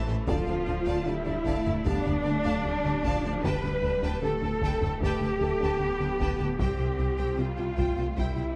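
Cinematic hybrid orchestral and electronic film score at 76 BPM in D dorian, vast and relentless, where a distant symphonic violin melody and a bright, focused studio violin line ride over background violas, warm French horn chords, up-front smooth-topped cellos, a very quiet double bass section, a swirling phased detuned saw bass, a punchy plucky analog bass riff, a soft felt-muted upright piano with audible action noise, and close, dry taiko drums entering at 0.3 seconds, all moving through Dm, Gadd9/D and C in a dark production with moderate stage reverb.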